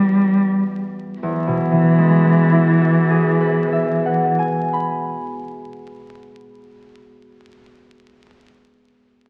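Crackling like a very old 78 rpm record and bathed in a wet scoring-stage reverb, this short cut from a longer pastoral, luminous impressionist duo in E major drifts at a rubato 41 BPM in 3/4, slowing over its opening as the harmony moves from Cadd9/E to Eadd9 at 1.2 seconds, with an up-front bowed cello singing a rich, expressive melody with vibrato, portamento and soft attacks until 4.3 seconds while a fingerpicked concert harp rings out its acoustic accompaniment beneath and then carries on alone.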